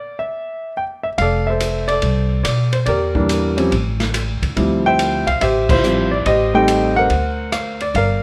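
A concert grand piano leads this short, relaxed and sophisticated jazz trio excerpt, playing the melody alone during the opening stop before the rest of the band enters at 1.2 seconds. The piano sits up front with an intimate, natural tone, deep bass and audible action noise. Pizzicato upright bass with steel strings adds a woody, warm low end, while an acoustic drum kit with dark cymbals, a medium-tuned snare and a boomy kick keeps a smooth, rolled-off sound through crash, ride, hi-hat and rim click. The swung 4/4 feel moves through a harmony of F6, Em7b5, Dm11 and Daug7, with a band accent at 5.6 seconds. A moderate large studio reverb gives the trio a polished sense of space.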